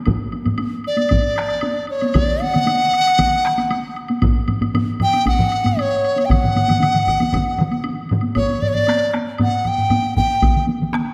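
A cut from a longer Japanese traditional piece opens at 0.1 s with several taiko ensembles struck with hard sticks and a woody woodblock, setting a ceremonial, driving pulse at 116 BPM in a straight 4/4. The drum layers differ in character: one is compressed and saturated, another sits close and dry, and two carry a small-room ambience, while the woodblock is kept similarly close and dry beneath them. At 0.9 s a large dizi takes the melody, ranging from C#5 to G5. Its bamboo tone is airy and mellow with a buzzing membrane, a soft attack, lifted highs and vibrato, and it sits up front as the most prominent voice. A further taiko layer joins at 2.2 s, thickening the ensemble, and a concert hall reverb casts a wet, spacious bloom over the piece.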